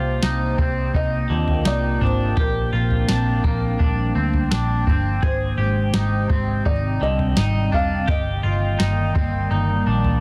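This short dream pop excerpt has a dense, heavily limited modern sheen, set in light reverb and digital ambience, with a blissful, dreamy mood over a straight, unhurried pulse. A soft vintage rhythm box drives it from 0.2 seconds with a deep kick, crisp snare and toms pushed through overdrive, while a dark, round, foam-muted picked electric bass sits prominently beneath. A twangy, clean electric guitar plays arpeggios through lush chorus and delay, and a warbling, nostalgic tape-like pad holds detuned, slow-attack chords with its own chorus and built-in reverb. A felt-muted upright piano carries the melody with a delay, intimate and dark, its thick felt and action noise audible. From 1.3 seconds a metallic, ringing vibraphone with medium mallets and motor off adds delayed texture in the background as the harmony moves from Cm7 through Gm7/Bb and Abmaj7 to Eb/G.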